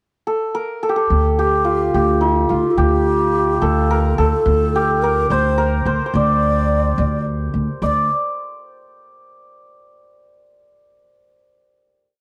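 Persian modal ensemble in D dastgah shur, a hypnotic and longing whole piece in a straight 6/8 at 72 BPM, where a shimmering, ringing hammered santur opens at 0.3 seconds with an up-front, ornamented modal melody, a woody, growly pizzicato upright bass enters at 1.1 seconds on a simple root-and-fifth part, and a breathy low ney with vibrato and tongued notes joins at 1.4 seconds, shadowing the same line with its own unsteady ornaments, all captured in a dry, close 1970s-style studio sound.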